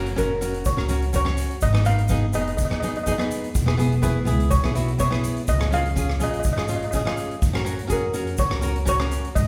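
A fingerpicked nylon-string guitar with a full-bodied, up-front tone and the occasional finger squeak opens this sunny, carefree calypso fragment together with a woody pizzicato upright bass. The street-band drum kit joins at 0.1 seconds with hi-hat, rim click and a boomy kick, its sound airy and polished. At 0.2 seconds a dark, shimmering double-seconds steel pan, struck with hard rubber sticks, takes the melody, while a grainy tube shaker sits close and dry in the background. The harmony moves from F#maj7 through G#m, E and C# before returning to F#maj7. The whole band rings out in the lush reverb of a church or concert hall, giving the easygoing groove a spacious, glowing finish.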